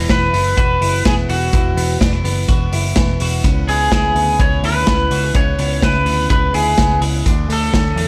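Jangly indie pop at 126 BPM in a straight 4/4, this short excerpt cut from a longer piece feels youthful and breezy. A bright, compressed twelve-string electric guitar plays clean picked arpeggios from the start, carrying a dub echo, while a dark, foam-muted picked bass gives a round, amped low end. At 0.1 seconds a slightly broken-up electric guitar through a small old amp joins up front with a twangy, lo-fi melody, also bathed in dub echo. A vintage drum kit sits forward too, with a punchy kick, medium-tuned snare, hi-hat, ride and dark cymbals in a pumping small room with a rolled-off top. The harmony moves from Esus2 to C#m7 at 3.4 seconds and touches Dmaj7(no3) at 7.3 seconds, all within an echo-heavy small-room mix.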